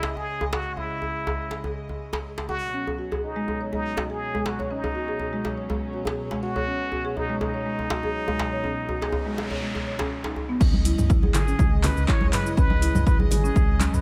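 Afro house at 122 BPM in C# minor with a hypnotic, spiritual mood, this excerpt opens with a plunger-muted trumpet singing a bright, wah-wah jazz melody with light vibrato and delay over reedy, gut-string studio strings that pump with the sidechain and a tight, cracking djembe up front. It adds a buzzing, woody marimba playing arpeggios with delay from 2.7 seconds, moves through an electronic noise sweep at 9.0 seconds, and drops at 10.6 seconds into a deep, round sub bass, a punchy layered electronic kick and an afro-pop kit with metallic hats, handclaps, shaker, toms and crash. Bright live-room congas join just after, all in a studio reverb.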